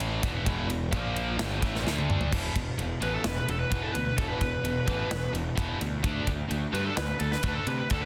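A dense, heavily limited modern master with light small-room reverb frames this driving, heavy hard rock fragment, cut from a longer piece. A tight, double-tracked distorted guitar riff, a punchy overdriven fuzz bass and a polished metal drum kit with a tight kick and bright cymbals all start together, and a drum fill at 1.9 s leads into the next section. At 3.0 s a high-gain lead guitar enters with a bright, picked solo line that carries through to the end.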